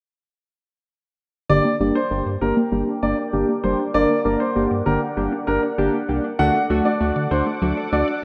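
Driving and nocturnal, this pop excerpt at 98 BPM in G harmonic minor moves from Gm to D at 6.4 seconds, with clear baby grand piano carrying a delayed second line up front beside warm, detuned analog keys, while a slow-attack resonant pad sustains chords and a bright, punchy unison pluck spins phased arpeggios in the background over a deep, round analog bass, all set in a lush 2.4-second hall reverb with a filter sweep running through this rough home demo mix.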